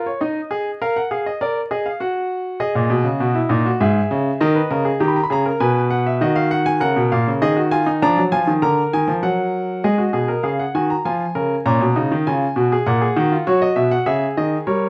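Set in a straight 3/4 at 100 BPM, this driving, solemn excerpt of a baroque-style three-part fugue in G# minor, tuned to A4 = 438 Hz, is played solo on a clear, intimate baby grand piano ranging from G#2 to B5. The piano sits up front with audible action noise and long sustain, framed by a moderate stone-room reverb in a dark production. Harmony moves through chords such as G#m, D#7 and A#7, and a new section begins at 9.8 seconds, passing through C#6 and A#m before settling on B69.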